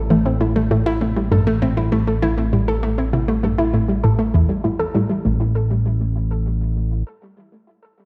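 A cassette-tape haze and a moderate concert-hall reverb wrap this short, cosmic excerpt of sequencer-driven space music in A minor, moving at a hypnotic 99 BPM in straight 4/4. Up front, a soft, gentle pluck spins dark arpeggios over an A minor chord under a filter sweep, with chorus and tape echo. A bright, detuned analog pluck riff sits in the background, also with chorus and tape echo, while a fat, mellow analog bass holds a sustained low A until 7.0 s, carrying on after both plucks stop at 5.5 s.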